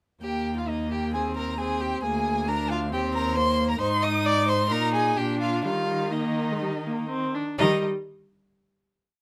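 A graceful, cheerful classical-period string quartet movement in Eb major, taken quickly at 122-137 BPM with a rubato feel. From 0.2 s the warm first violin sings the melody with expressive vibrato and portamento, while the focused second violin doubles the tune an octave below, the clear viola weaves independent inner lines, chords in the tune's rhythm and sustained chords, and the rich, up-front cello holds a sustained bass with passing notes. Close, detailed microphones and light reverb frame this complete short piece, which settles on a final chord at 7.6 s.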